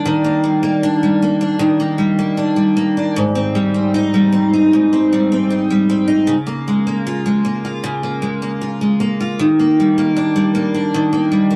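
A bright, up-front picked steel-string acoustic guitar plays alone through this dreamy, sunny indie pop excerpt at 77 BPM in Eb major, its lush chorus and vibrato coloring an Ebmaj7, Abmaj7, Db6 progression that returns to Ebmaj7 at 9.4 seconds, all captured in a dry, close 1970s-style studio sound with light reverb and lossy compression artefacts.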